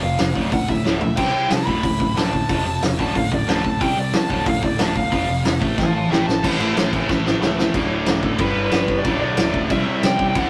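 A rough rehearsal-room recording with light reverb captures this upbeat, energetic punk rock cut from a longer piece, charging along at 183 BPM in a straight 4/4. Up front sits a loose, small-room indie drum kit with dark cymbals, a fat snare and a tight kick, while a growly, punchy picked bass sits in the background and three riffing guitars stack up: a bright, scooped and compressed distorted guitar, a very quiet double-tracked fuzz guitar, and a very quiet, sludgy overdriven guitar. Over the top, a shadowy, bluesy distorted lead guitar solos until 6.4 seconds, with drum fills punctuating the groove before the chords shift through D5, G and C to close.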